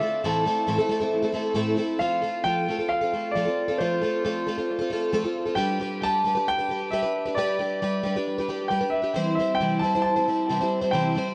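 This rock excerpt moves at 134 BPM in a straight 4/4, with a dusty, reflective mood and tuning set to A4 = 436 Hz. A warm concert grand piano carries the melody between C5 and A5, its deep bass and long sustain lending an open quality. Beneath it, a picked plugged-in twelve-string acoustic guitar plays the accompaniment from A2 to C5, up front in the mix. Its old strings give a dark, woody, boxy tone with a shimmering, octave-doubled character. Both parts play throughout and are treated with dub echo, set within a wet echo chamber reverb that makes for an echo-heavy sound. The harmony opens on Am, then shifts at 2.0 seconds to F, passing through G and settling on C by 9.2 seconds.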